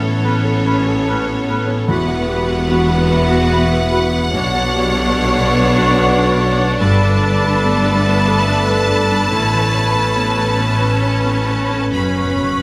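Sorrowful and moving, this cinematic excerpt in 3/4 unfolds with rubato freedom. A lush, vibrato-laden violin section carries the melody over a second violin line, smooth violas, and a bowed foundation of cellos and focused double basses, while an intimate grand piano, ringing harp arpeggios and dark, distant French horns sustaining chords fill in beneath. Just after the opening, an airy flute ensemble, a roomy oboe and a mellow clarinet add background lines within a moderate scoring-stage reverb, and very quiet, hard-mallet timpani enter at 11.9 seconds for a brief fill on the final chord.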